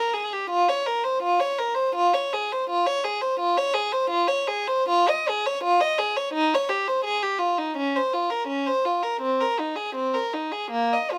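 A reedy, gut-string solo violin played in period style carries this flowing, solemn 11.2-second excerpt of a baroque-style suite movement for unaccompanied violin, its bowed line moving with a free rubato feel in 4/4 and captured up front by close, detailed microphones in a light reverb.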